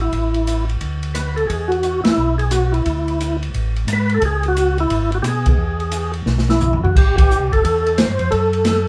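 Soul jazz organ trio swinging at 176 BPM with a late-night, smoky mood, where a fat, lightly overdriven percussive tonewheel organ carries the melody through slow rotary speaker and chorus vibrato over a round, mellow tonewheel organ bass line and an airy acoustic jazz kit with dark cymbals and a boomy kick, the band hitting accents at 2.0 and 7.1 seconds around a drum fill from 6.3 to 6.9 seconds, all heard from further back in a moderate studio room in this excerpt cut from a longer piece.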